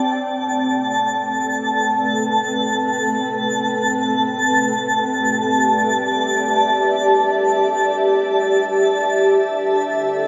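An ethereal, detuned pad fades in at the start of this melancholic ambient fragment, holding mellow, sustained chords that move from Am7 to Em7 and settle on a D7 that omits its third at 9.3 seconds, with ensemble chorus and its own reverb. A twinkling granular texture sits high above it for the full 10.3 seconds, adding a sparkling octave-up shimmer with its own reverb. Both parts sit up front in a dark, spacious production steeped in huge ambient reverb.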